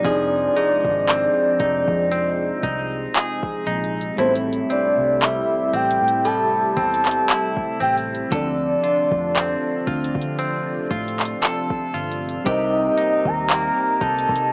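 Contemporary R&B at a slow 58 BPM in A minor, this short cut from a longer piece carries a longing, sensual mood, with a gentle swing on the sixteenths over chords moving from Fm7 to Am7, Dm7 and Cm7. An octave-layered synth lead sings the melody up front, its round, full tone colored by chorus, tremolo and vibrato, while a mellow FM electric piano and a lush, detuned unison pad sit in the background with chorus of their own. A twangy, direct-recorded clean electric guitar picks bright arpeggios through spring reverb and tape echo, and a dark, foam-muted fingered bass anchors the low end. The smooth electronic drum kit pairs a soft kick with crisp hi-hats and handclaps, though the kick drops out between 4.2 and 6.3 seconds. A very quiet, inharmonic synth chime rings in from 0.6 seconds, and the whole mix has the worn, warbling feel of old cassette tape heard through a small speaker, with light reverb.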